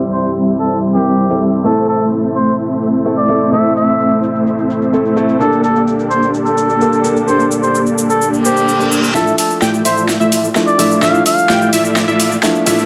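Euphoric and powerful, this festival progressive house excerpt drives along in a straight 4/4 metre. A filter sweep runs through the opening, and a thick, detuned supersaw riff sits up front with tape echo and a low-pass filter, sweeping again during the build, while a concert grand piano supplies short-sustained accompaniment with a deep bass register. A cup-muted trumpet carries the melody from 0.1 seconds, its soft, veiled tone and light vibrato lending a jazz-style solo voice, also touched with tape echo. The big-room drum kit is layered and overdriven, with a huge snare, hi-hat and shaker under small room ambience and high-pass filtering. A very quiet reverse cymbal and riser come in at 8.4 seconds. At 9.1 seconds a punchy, catchy plucky lead enters in the background with echoed arpeggios, as a drum fill and build-up arrive with the move to Dmadd9, completing a progression that runs from C through Am and Gmadd9.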